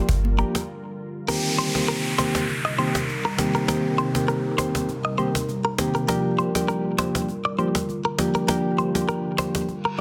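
A dense, heavily limited mix with light reverb carries this sultry, hypnotic afrobeats excerpt in C minor at 100 BPM with a 16th-note swing. Mellow, up-front electric-piano-like synth keys with chorus and a deep, moody sawtooth pad with its own reverb hold Gm7 and Cm7 chords throughout, while a barely audible round pluck appears only in the first 0.9 seconds. A snappy, close and dry cajon enters at 0.1 seconds, a very quiet, high-tuned conga sounds briefly, and a bright, direct-recorded clean guitar riff with phaser and tape echo joins at 0.4 seconds. After a break, electronic downlifter and reverse-cymbal effects arrive at 1.3 seconds, and a final reverse cymbal appears at 9.8 seconds.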